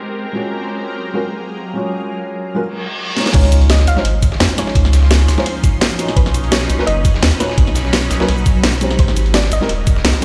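A deep, round sub bass sits up front alongside a knocking electronic kick drum when the drop hits at 3.3 seconds, carrying this lush, uplifting liquid drum and bass cut from a longer piece at 170 BPM with a gently swung 16th feel. Before that, a shimmering, ethereal ambient pad with phaser and chorus holds sustained chords from Abmaj9 to Gbmaj9 beside a muted, mellow felt upright piano with audible action noise and delay, while a filter sweep and a background reverse cymbal from 2.8 seconds lead into a drum fill and an electronic impact. After the drop, a layered drum and bass kit with a cracking snare, cabasa, crash and hi-hat drives over a gritty, compressed sampler-style soul kit tucked in the background, and a soft pluck melody, colored by cassette tape and delay, floats quietly behind the Dbmaj9 and Cbmaj9 chords in a stone-room ambience.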